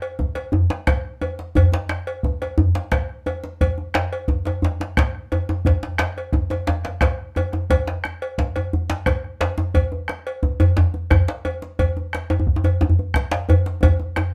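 West African traditional drum ensemble music, festive and driving at 117 BPM in a straight 12/8, cut from a longer piece: a metallic cowbell sounds alongside a dark, booming bombo and two warm djembes, one of them set up front with the bombo, all heard close and dry in light reverb, until a drum fill closes the passage at 13.8 seconds.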